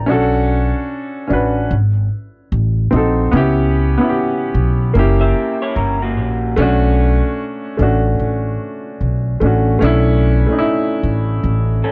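Reflective and hazy, this lo-fi hip hop excerpt at 74 BPM in B minor sways with a swung sixteenth-note feel as a woody, up-front upright piano, dulled by cassette tape and a low-pass filter, plays accompaniment through Bm9, G#7b9, C#m7b5 and F#7b9 over a thumpy pizzicato upright bass, while a slightly broken-up, fingered electric guitar through a small old amp, bathed in lush chorus and tape echo, slips in quietly from 5.2 to 6.5 seconds, the whole set in a light reverb.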